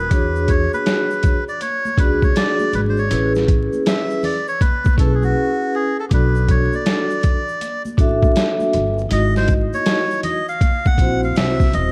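Jazz-hop with a nocturnal, mellow mood, this excerpt moves at 80 BPM in 4/4 with a swung sixteenth-note feel, set in B dorian over a dark production dusted with vinyl crackle. A reedy, breathy melodica carries the solo melody throughout, and a short break arrives from 5.4 to 6.1 seconds. Beneath it, a woody pizzicato upright bass holds the low end, while a vibraphone played with soft mallets sits up front, its ringing, airy tone shimmering with a slow motor vibrato. The sampler-style boom bap kit is gritty and compressed, with a thumpy kick, a medium-tuned snare and hi-hat, re-recorded in a large room and placed prominently in the mix. Bright tube shaker and hard-handed congas stay in the background, and the harmony passes through E13, Amaj9, Bm7 and G#7b13 under a light small-room reverb.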